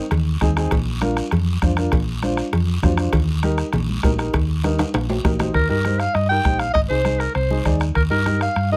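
A sunny, joyful cumbia excerpt at 199 BPM in Eb major, over chords moving through Ab, Bb and Eb, opens on a woody, slightly detuned upright piano with audible action noise, joined at once by a dark, round hollow-body electric bass up front, soft-beater bombo, thick-skinned congas in the background, ringing cowbell and timbales, and a raspy, saturated guiro, all close and dry, until a drum fill at 4.6 seconds leads at 5.5 seconds into a clear jazz-style clarinet solo with light vibrato and scooped notes.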